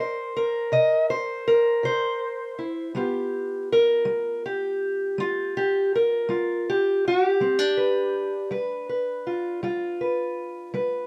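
A lone fingerpicked steel-string acoustic guitar opens this short fragment of a longer acoustic country blues piece, sitting up front with a swaggering, soulful character. Its parlour-sized body gives a dark, woody, boxy tone, heard through old strings. The tempo is a slow 54 BPM counted in dotted quarters, in a 12/8 metre with a straight feel. The harmony starts on a C7 with its third omitted and moves to G7 at 3.0 seconds, the guitar ranging from C3 up to Eb5. A light reverb surrounds the playing, and the guitar carries on alone until the fragment ends at 11.1 seconds.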